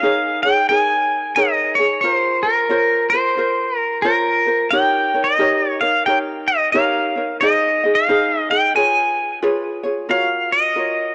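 Heard through the soft grain of a home cassette recording and a lush hall reverb, this languid, dreamy Hawaiian fragment sways at 89 BPM with a gentle swing. An electric pedal steel guitar carries the melody up front, bright and twangy, with fingerpicked slide lines and volume swells. A light acoustic ukulele, fingerpicked and close, supports it through drifting chords from Eb7sus4 and Bbmadd9 to a closing Gbmaj7.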